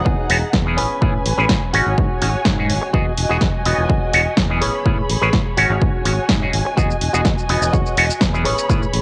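An overdriven auto-wah clav, nasal and stringy through a combo amp, opens this joyful filtered disco house excerpt at 125 BPM in E major, alongside a dark, distant bowed chamber string section; both pump against the sidechain under a low-pass filter and a cassette tape haze. A clean, twangy picked electric guitar riff and a growly fingered bass with tube saturation join almost at once, over an analog electronic kick re-recorded in a large room and a drum machine's snare, hi-hat and shaker, with the hats and percussion also pumping. Emaj9, Amaj9 and G#7sus4 chords cycle beneath light reverb, and the home cassette recording gives the feel-good groove a lo-fi glow.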